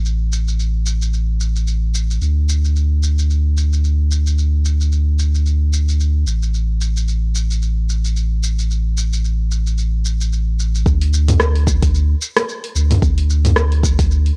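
Dry and gritty with cassette-tape saturation, this warm, smooth sunset chillout excerpt moves at 111 BPM with a lightly swung feel, as a round, sine-like sub bass sits up front from the start beneath a layered deep house kit of hi-hat, rim click, shaker and toms re-recorded in a small room, until a deep, up-front electronic kick joins at 10.9 seconds.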